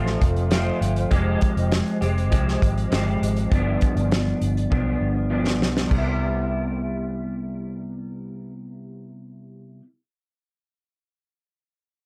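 A bright, twangy electric guitar through a small old amp accompanies this nostalgic, laid-back bedroom-pop excerpt at 100 BPM in C major, its slightly broken-up picked chords shimmering with ensemble chorus and vibrato as they move from F through Fmadd9 and G7 to Cmaj7. Beneath it, a dark, round, foam-muted fingered bass sits low, while a loose, up-front acoustic kit with a fat snare, tight kick and rolled-off top plays a fill from 4.7 to 5.9 seconds and drops out at 6.1 seconds. The dry, close sound carries the soft grain of cassette tape.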